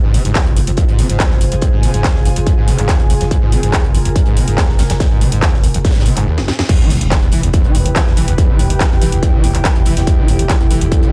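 A screaming, squelchy acid line with resonant filter sweeps, distortion, chorus, tape echo and sidechain pumping drives this hypnotic peak-time techno cut at 142 BPM, over a growling, buzzy 808-style bass in the background. Up front sits a distorted electronic kick, alongside a techno kit with a cracking snare, handclaps, crash and metallic hats and a dry, high-tuned reggae kit of hi-hat and snare further back, while a warbling, nostalgic lo-fi pad with phaser fades in over the first 6.7 seconds on F minor. After a short break and drum fill, the drop lands at 6.7 seconds on E minor with a very quiet electronic impact, and the mix sits in a digital ambience.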